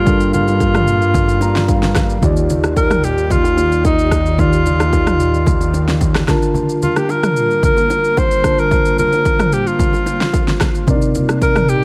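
Soulful and deep, this amapiano excerpt moves at 111 BPM in a straight 4/4 feel in G minor, passing from Gm7 to Ebmaj9, back to Gm7 and on to Cm7. A breathy, whispered alto saxophone carries the melody up front, its intimate tone trailed by tape echo, while a mellow tine electric piano accompanies throughout and adds a brief fill from 1.1 to 2.2 seconds. Beneath them, an ethereal, airy pad holds very quiet sustained chords with slow attack, ensemble chorus and built-in reverb. A fat, detuned sawtooth analog bass with a saturated filter pluck anchors the low end until 6.2 seconds. The overdriven deep house drum kit sits up front with a punchy kick and fat snare alongside rim click, shaker and toms, the kick dropping out between 6.6 and 7.6 seconds, while soft-handed congas and bongos add a bright, very quiet acoustic layer in a digital ambience.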